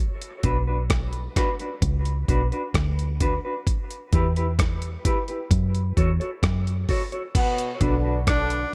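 A gritty, overdriven sampler-style drum kit anchors this heavy, deep dub reggae excerpt at 65 BPM in B minor, its thumpy kick, hi-hat, rim click and crash cymbal sitting compressed and up front. Beneath it, a round, punchy fingered electric bass with a dark, foam-muted tone holds the low end, while a mellow, clean electric guitar adds dark, fingered accompaniment soaked in dub echo. The opening stretch is a break that moves through Bm, Em and F#m before returning to Bm at 7.3 seconds, where a clear trombone section enters with light vibrato and its own dub echo. A smooth-topped tenor saxophone appears at 8.3 seconds, carrying the melody on a single D4. The whole mix is bathed in echo-heavy digital ambience, giving the piece a cavernous, dusty atmosphere.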